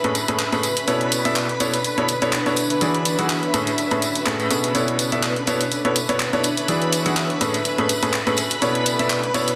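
A lush hall reverb and a dense, heavily limited modern master give this short piano house excerpt a glossy, full sound. At 124 BPM in 4/4 with a light swing on the sixteenths, it sits in B dorian and carries a soulful, bittersweet mood as the chords move through Amaj9, Bm11 and E9. Up front, a clear baby grand piano plays a riff with audible action noise, short sustain and digital delay, sounding intimate and a little worn. Behind it, a vintage string machine holds shimmering, bright violin chords with ensemble chorus, while a granular cloud pad adds a blurred, evolving layer that is softer in the mix. A layered electronic house drum kit drives the groove with handclaps and hi-hat, and from 0.2 seconds a tambourine sits in the background alongside egg shaker and group handclaps.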